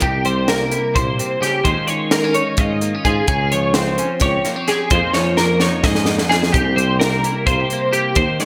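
Two bright, twangy twelve-string electric guitars open this short, intricate math rock and midwest emo fragment together with tuba and drums, all moving in a restless 7/8 with a straight feel. One guitar spins picked arpeggios high in its register through an ensemble chorus and digital delay, while the up-front guitar plays clean, compressed accompaniment beneath it with a subtle chorus. A warm tuba carries the bass line with scooped notes in a pop style. The crisp fusion drum kit sits up front, its high-tuned snare, punchy kick and hi-hat sounding saturated and gritty in a small, pumping room with gated reverb. A drum fill runs from 5.2 to 6.5 seconds over a progression that moves from C7b9 through Eb9sus4, Bbm9/Db and Fm7 before landing on C7. The bright 1980s-style digital production places the parts in a moderate plate reverb with studio ambience.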